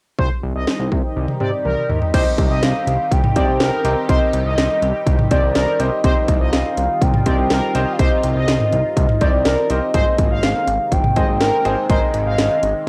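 Nocturnal and cool, this synth-pop excerpt opens with a punchy, overdriven house drum kit and a fat, detuned analog bass sitting up front, its sawtooth tone shaped by a filter sweep. Behind them, a resonant, evolving pad holds sustained chords with a slow attack and a filter swell, while brassy analog synth brass carries a bold second line through chorus and tape echo. At 1.4 s a hollow, woody clarinet-like lead takes the melody with soft vibrato, and a drum fill at 1.7 s leads into the next section. From 2.1 s a brilliant grand piano adds short-sustained accompaniment in the background as the harmony settles on C minor before moving to an Abadd9 chord. The whole excerpt carries the light reverb and homespun character of a cassette recording.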